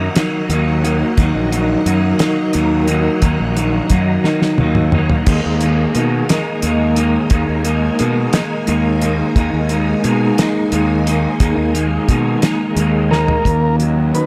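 A lightly reverberant studio sound frames this dark, trippy psychedelic rock excerpt in a slow 6/8 at 59 BPM, where a twangy, double-tracked clean electric guitar riff spins through a rotary speaker over a round fuzz bass, a damped 70s drum kit with a fat snare and fills around 4.2 and 13.1 seconds, and a lush string machine in the background, while chords move from Ebm to Abmadd9/Eb and a mellow, heavily vibratoed combo organ with analog delay enters for a brief melody at 13.1 seconds.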